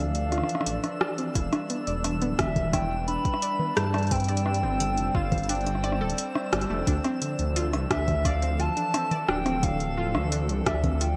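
IDM at 87 BPM in D dorian, intricate and glitchy, where a warbling, nostalgic lead with vibrato and chorus carries the melody over hollow, flute-like pad chords, a lo-fi dusty pluck arpeggiating in the background with 12-bit grit and delay, a deep, rumbling detuned saw bass with tube saturation, a twinkling granular shimmer, and a booming analog drum machine of congas, metallic hats and rim clicks in gated reverb, joined at 1.4 s by an overdriven electronic kick, all set in a bright 1980s-style digital production with plate reverb as the chords move from Dmadd9 through Em7 and Gsus4 and back.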